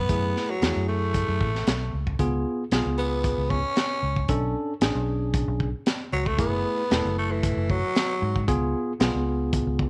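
Mournful and soulful, this straight-eighth soul blues excerpt in F# minor at 114 BPM sets a growling, raspy tenor saxophone up front over a punchy, foam-muted vintage bass, a clean tine electric piano and a crunchy, saturated breakbeat kit with a high-tuned snare, all in light studio reverb as the chords move from F#m7 through C#7 and Bm7, with the saxophone dropping out at 8.5 seconds.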